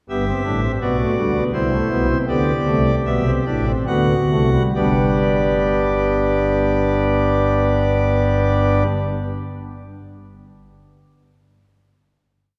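Classical baroque-style four-part fugue in G major and 3/4, lively yet stately at 66-83 BPM, played solo on a pipe organ's nasal cornet stop in romantic voicing, set up front in imitative counterpoint that slows through its brief exposition before settling on a final G chord at 4.8 seconds, all heard from further back in a church with a long, wet reverb.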